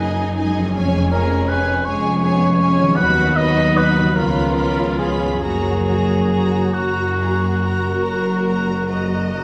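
A mellow, up-front cor anglais carries a second line through this tender, slow romantic passage for symphony orchestra in F# major, played with rubato in 12/8 at 45-55 BPM, as a clear, distant violin section sings the melody, a lush background violin section and close viola section fill the middle with vibrato, a very quiet, ringing harp plays arpeggios, rich cellos and double basses hold the bass, and dark horns add sustained chords from 0.4 s, all set in a wet scoring-stage reverb.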